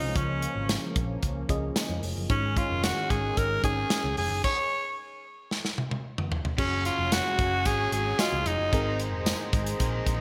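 A raspy, forceful tenor saxophone with digital delay carries the melody up front in this dramatic, nostalgic 1980s-style pop fragment, over a mellow FM electric piano with chorus and phaser, a brassy detuned analog pad, a round hollow-body electric bass and a studio drum kit with a punchy kick and gated reverb, joined by a very quiet jingly tambourine, as a stop at 4.4 seconds gives way to a drum fill at 5.5 seconds and a cranked, overdriven stack guitar enters in the background at 6.6 seconds, all within a bright digital production with plate reverb.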